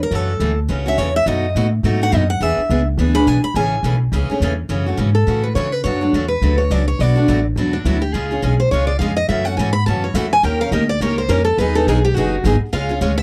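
Acoustic string swing in the jazz manouche style, lively and charming at a brisk 209 BPM with a swung feel, shifting from A major to F# minor around 4.7 seconds. A bright picked steel-string guitar carries the melody until 4.0 seconds, a second guitar line with fresh strings takes over from 5.1 seconds, and another picked guitar, with fresh strings and audible finger squeak, supplies accompaniment throughout over a woody, thumpy pizzicato upright bass on gut strings. The sound is dry and close, in the manner of a 1970s studio, with light reverb and every part up front, in this short cut from a longer piece.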